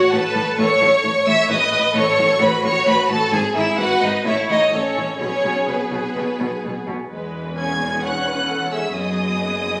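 Moving in a quick, rubato 4/4, this graceful and lively classical-period movement for string orchestra is a fragment of a longer piece, captured on a phone in a recital hall with a wet reverb. Up front, a warm chamber violin section carries the melody with smooth, even vibrato, while a focused symphonic violin section adds a lush second line. Beneath them, the violas supply accompaniment with a softened top, and the distant cellos and double basses, the latter with light vibrato, enter at 0.1 s to anchor the bass before the music moves into a new section at 7.1 s.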